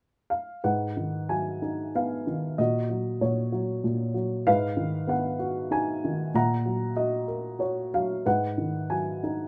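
A lone dark, woody upright piano enters at 0.3 s, up front in a close, detailed sound with light reverb and a short sustain, and plays a brooding, lyrical classical passage in a rubato three-beat lilt that sways between Abm7 and Ebm7/Bb chords until this fragment of a longer piece breaks off at 9.5 s.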